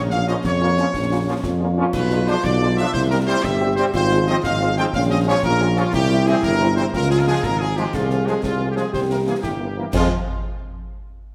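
A mellow tuba and euphonium open this stern, martial wind-band march in a straight 6/8, joined almost at once by a warm trumpet section carrying the melody up front, a dark, punchy French horn section kept very quiet, and concert snare, bass drum and bright clash cymbals. Trombones enter at 0.3 seconds with soft-attacked sustained chords set distant and roomy in the background, while the trumpets, euphonium, trombones and tuba play in a classical style with light vibrato. The whole band sits in a wet concert-hall reverb, and the passage, cut from a longer piece, moves through minor and diminished harmonies toward a closing cadence on F minor.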